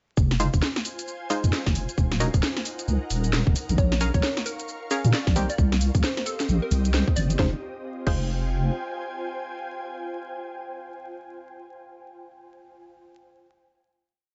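A dry, dusty mix with vinyl crackle and a dull, rolled-off top frames this late-night, skippy two-step UK garage piece in F minor at 133 BPM, its 16ths swung. An overdriven, up-front electronic kick and a layered garage kit with a cracking snare, swung hats, shaker and crash drive the drop over a deep, wobbling, chorused bass riff, while sparse, punchy sawtooth chord stabs with cassette-tape colour and dub echo move one shape in parallel through Fm7, Ebm7, Bbm7 and Cm7. An ethereal, airy pad pumps softly beneath, and from 3.8 s a hollow, bouncy square-wave pluck repeats a mellow riff, carrying on with the stabs and pad through the final Fm7 chord after the drums stop near 8.2 s and the bass near 8.7 s.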